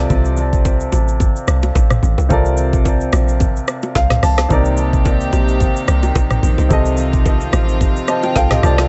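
Amapiano with a deep, hypnotic pull and a gentle swing, this short excerpt pairs a worn, up-front baby grand piano, treated with analog delay and slipping in fills around 3.7 and 7.8 seconds, with a round, percussive log drum bass that decays into darkness. An electronic R&B kit with a knocking kick, woody snare and metallic hats sits forward, while bright, hard-handed congas and bongos with their own analog delay stay in the background. From 4.5 seconds a soft-attack, bowed string section floats in from a distance, all set in an echo-heavy small-room mix with the top end rolled off.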